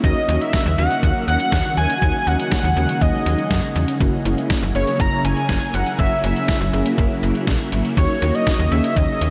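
Synth-pop at 121 BPM in a straight 4/4, this short, nostalgic yet upbeat cut from a longer piece moves from D#m7 to F#7 and back, with a thick, bold unison lead carrying the melody through an analog delay over mellow, brassy synth brass treated with chorus and phaser and a swirling, vintage string machine holding sustained chords. Underneath, a snappy FM bass with a metallic attack anchors the low end while a detuned 8-bit drum machine supplies a thumpy kick, medium-tuned snare and hi-hat with a tape-warm, up-front character. The whole dreamy mix is soaked in a huge ambient reverb with a decay of 8.6 seconds.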